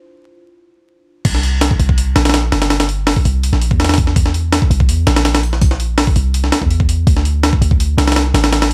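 A straight 4/4 drum and bass groove at 165 BPM, jungle in flavor, drops in at 1.2 seconds on a compressed, pitched-up breakbeat kit with a thumpy kick, high-tuned snare, hi-hat and crash, sitting up front beside a deep, boomy 808-style bass with a sine tone and tube saturation. Before that, a warbly, lo-fi pad with chorus, built-in reverb and 12-bit sampler grit holds a dark Dm9 chord under a filter sweep, and the drop then moves through C7 to D7(no3) at 7.1 seconds. Vinyl crackle colors this cut from a longer piece, adding to its nostalgic, atmospheric mood.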